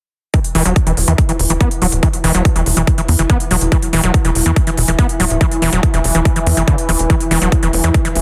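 A straight pulse is set by a punchy, overdriven kick up front and crisp, overdriven electronic hi-hats from 0.3 seconds, with a tight sequencer bass joining at 0.5 seconds in sawtooth and wave-folded plucks that decay. An up-front, squelchy acid bass riff, gritty with distortion and tape echo, rides a filter sweep and pumps against the kick. From 1.0 seconds a bubbling stepped-filter texture holds sustained chords with chorus and its own reverb, giving this dense, heavily limited psychedelic trance cut an alien, psychedelic feel.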